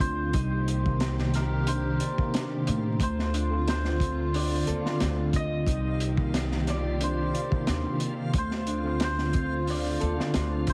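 A crunchy, saturated breakbeat kit with a punchy kick and high-tuned snare sits up front beside a growly, woody pizzicato upright bass, driving this smoky, cinematic trip hop excerpt at 90 BPM in D phrygian, moving between Cm7 and Dm7. A hammered, shimmering cimbalom carries the melody through tape echo over a gritty, overdriven tine electric piano with harmonic tremolo, while a clean, fingered electric guitar plays arpeggios and a lush, bowed string section holds distant sustained chords in the background. From 0.6 s a very quiet reversed, detuned granular texture drifts in, and the whole piece has a heavily compressed radio sound, small room ambience and vinyl crackle.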